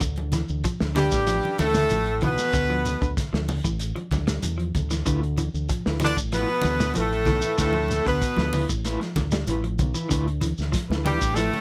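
Funky and defiant, this afrobeat excerpt moves at 95 BPM in a straight 4/4, sitting on a single Dm69 chord in D dorian. A crunchy breakbeat drum kit with a punchy kick, medium-tuned snare and hi-hat sounds saturated and gritty with a rolled-off top, while a round, up-front fingered electric bass holds the low end from the start. A grainy shekere and thick-skinned, damped congas, the latter tucked in the background, fill out the percussion, and a clean electric guitar picks tremolo-treated arpeggios underneath. At 1.0 s a tight, clear horn section takes the melody with octave doubling and light vibrato, backed by an edgy, forceful tenor saxophone and a raspy baritone saxophone playing second lines in the background. From 5.1 s a dark, mellow electric guitar adds fingered stabs with tremolo, and light reverb gives the mix some air.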